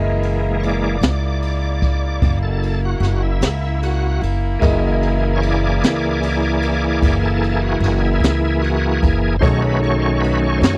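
An excerpt of laid-back, soulful slow blues in 12/8 opens on a bright, shouting tonewheel organ solo, lightly overdriven through a slow rotary speaker with chorus vibrato, over a woody, growly upright bass up front, a dark brush drum kit with boomy kick and high-tuned snare entering at 0.2 seconds, and a clear grand piano accompanying and a mellow, tight saxophone section sustaining chords in the background, all in a dry, close 1970s-style studio sound as the harmony moves from F#13 to B13 at 9.4 seconds.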